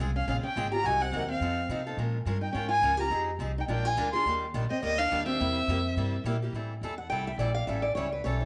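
A picked steel-string guitar and a woody, thumpy gut-string upright bass open this fiery, bittersweet gypsy-jazz swing excerpt at a brisk 211 BPM, moving through a jazzy progression from Dbmaj7 toward Ebmaj7 and C7. A second, boxy parlour guitar with fresh strings and slapback echo adds a line while an expressive bowed violin sings the melody up front with vibrato and portamento until 6.2 seconds. At 6.5 seconds the music shifts to a steel-string guitar solo over Am7 and A7, the bright, finger-squeaky picking set in a small-room echo-chamber reverb.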